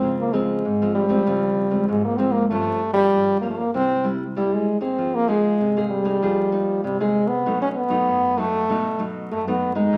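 A large, wet studio reverb and a layer of vinyl crackle surround this lively, playful samba at 97 BPM in a straight 4/4, cut from a longer piece. Up front and close-miked, a clear French horn carries a solo melody in a classical style between G3 and D#4. A dark, fingerpicked nylon-string guitar plays classical accompaniment through Dbmaj7, Gm7b5, C7, Fm11 and B7 across the full 10 seconds.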